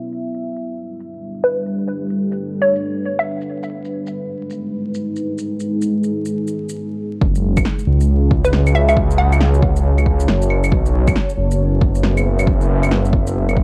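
A dry, gritty recording with vinyl crackle and a low-pass filter gives this future garage excerpt a muffled, rainy, wistful air, cut from a longer piece and moving at 137 BPM in 4/4 with a 63% swing on the sixteenths in F# dorian. A deep, moody pad of detuned sawtooth and sine layers with a sub octave holds sustained chords from the start, its slow attack and long release softened by chorus and built-in reverb, while sidechain pumping makes it breathe and a filter sweep runs across it through the opening half. Electronic shaker, claves and a fat, overdriven snare enter almost at once, and a hollow, bouncy square-wave pluck with a noise layer, chorus and analog delay sits up front with short melodic phrases, first appearing at 1.4 seconds. The harmony drifts from Gmaj7 to G#m, then after a brief break the second half begins at 7.2 seconds with F#m and later B7sus4. There a punchy, layered electronic kick with overdrive arrives alongside a menacing, saturated detuned saw bass whose evolving filter swell pushes forward and pumps under sidechain compression. 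The pluck returns at 8.4 seconds for one more short phrase.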